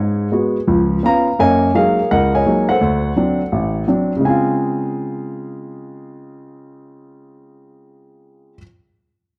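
Solo jazz in D-flat major, swinging briskly at 169 BPM in 4/4 with a sophisticated, warm mood, heard as a brief fragment lifted from a longer performance. A baby grand plays alone for its 8.6 seconds, sitting up front with an intimate, natural tone and audible action noise as it moves from Abm7 and Db7 through Gb69 and D7 before settling on Dbmaj7. The production is dark, with moderate reverb from a large studio adding space, and the piano is tuned slightly flat to A4 = 437 Hz.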